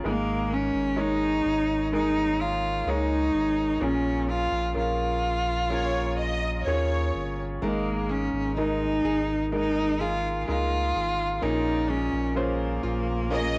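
Open, long-sustaining baby grand piano and a deep, round sub bass begin this tender, hopeful pop ballad at 64 BPM, moving between Absus2 and Bbm7, as a rich, expressive bowed cello carries the melody up front with vibrato and portamento, a lush symphonic violin section adds a smooth second line from 5.7 seconds, and a fingerpicked classical nylon-string guitar plays arpeggios in the background from 7.6 seconds, set in a small room with light reverb and captured as a home recording on cassette.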